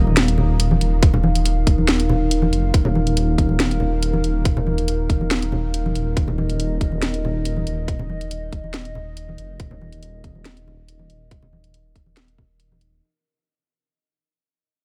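A half-time 4/4 pulse at 140 BPM drives this dark, heavy deep dubstep piece, where a tight, overdriven electronic kick arriving at 1.0 s and a garage kit with cracking snare and hi-hat sit up front in a small room, bright close congas add acoustic color, a rumbling, beating detuned sawtooth bass holds the low end, and a moody wave-folded analog pad sustains an Eb5 chord through lush chorus, the track tuned to A4 = 441 Hz and fading out across its 13.0 seconds.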